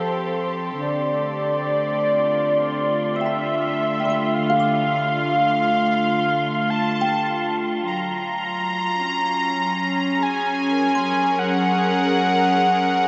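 In a straight three-beat lilt, this peaceful, warm ambient fragment sets a velvety, detuned synth lead with chorus, vibrato and a diffuse delay up front over soft, pure sul tasto strings holding sustained chords. Beneath them, a woody, mellow kalimba rings out delayed arpeggios and a breathy, dark wind-like texture lingers in the background, while the harmony moves from F to Dm before shifting to Gb at 7.9 seconds inside an enormous reverb with a muted top end.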